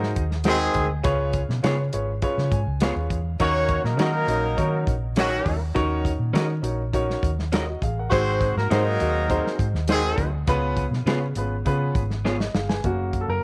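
Uptempo 1960s-style soul at 102 BPM in a straight 4/4, this short danceable cut from a longer piece has a warm, inviting glow. A dark horn section plays a smooth-topped second line with light vibrato and octave doubling, sitting up front in a jazz-style ensemble sound until 10.3 seconds. Alongside it, a grand piano with short sustain comps up front and adds a fill around 2.2 seconds. A foam-muted, fingered electric bass gives a round, punchy low end, and an acoustic soul drum kit with a tight kick, medium-tuned snare and rolled-off top keeps a dry, smooth groove, closing on a drum fill at 12.3 seconds. An electric guitar through a small old amp adds slightly broken-up, compressed, lo-fi stabs, all within light reverb and small room ambience as the chords move from G#7 through C#7 and D#m7 to land on F#.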